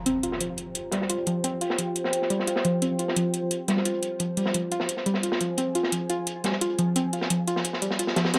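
Dark technical drum and bass at 174 BPM in F minor, tense and mechanical, this excerpt opens with a deep, moody pad of detuned sawtooth and sine layers holding sustained chords under chorus and its own reverb. A soft, round, wave-folded pluck sits up front playing arpeggios through chorus and tape echo, while a gritty, saturated breakbeat kit with a high-tuned snare and rolled-off top is filtered on hats, snare and room. A metallic, layered electronic hi-hat, re-recorded in a small room, rides up front within a moderate plate reverb.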